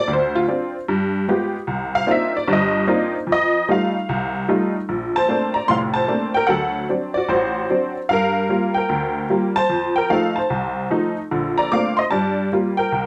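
Swinging and warm, this short excerpt from a longer piece is solo jazz in Bb major at 150 BPM in 4/4, with a swung eighth-note feel. A single honky-tonk upright piano carries everything, its detuned, jangly tone sounding vintage and bright, with short sustain and an up-front presence. It ranges from F1 up to D6, and the opening 4.9 seconds are a featured honky-tonk piano solo. The harmony moves through a ii-V-style turn of Dm7, G7b9, Cm11 and F9 before settling on Bbmaj9 at 4.9 s, where a second section begins and passes through D7, Gm7 and F7 back to Bbmaj9 and Gm7. A moderate club reverb gives the piano a small, lively room around it.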